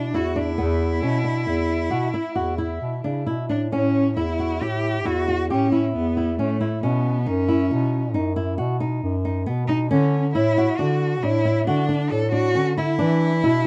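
Set in an uneven 7/4 at 136 BPM with a straight feel, this urgent, restless contemporary chamber piece is cut from a longer work and moves from an E-centred opening into a passage moving through A, Badd9 and Dmaj7 from 3.7 seconds. A rich, expressive bowed cello carries the melody with vibrato and portamento, while a thumb-plucked acoustic flamenco guitar spins arpeggios alongside it and a mellow bass clarinet in a jazz style supplies the bass line with vibrato and a distant, roomy tone. All three parts sit up front in a dark production lightly touched with reverb.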